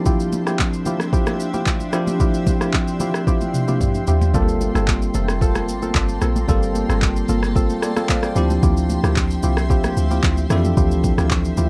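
Soulful and deep, this amapiano excerpt at 112 BPM sets a bell-like tine electric piano over a blurred, evolving granular pad with sidechain pumping, hollow organ stabs with chorus and tape echo, an overdriven, up-front R&B drum kit of handclaps, kick, rim click, shaker and toms, and very quiet high-tuned congas, resting on Dm11 until a drum fill at 3.3 seconds leads to a round log drum bass entering at 4.3 seconds as the harmony moves to Gm11, then back to Dm11, in a dark production.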